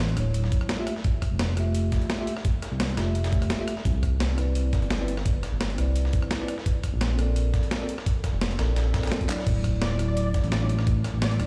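A straight liquid drum and bass groove drives this dreamy, warm passage cut from a longer piece. It is built from two layered sampler-style kits: a breakbeat kit with gritty compressed snare, hi-hat, rim click, handclaps and crash, and a dusty soul kit, overdriven and re-recorded in a small room, with high-pass filtering on its hats, snare and room sound. A thumpy electronic kick sits up front from 0.5 seconds. Underneath, a smooth, dark synth bass blends sawtooth and square waves with ring modulation, sustaining its notes with a fast attack. A bell-like tine electric piano, bright and clean, moves through lush ninth chords with analog chorus and digital delay. After a drum fill at 9.3 seconds, a punchy, catchy unison lead of detuned saws, sine and a noise layer enters at 9.8 seconds with a filter sweep, subtle chorus and delay, while the whole mix sits in a large studio reverb, as if played on a big sound system in a bare room.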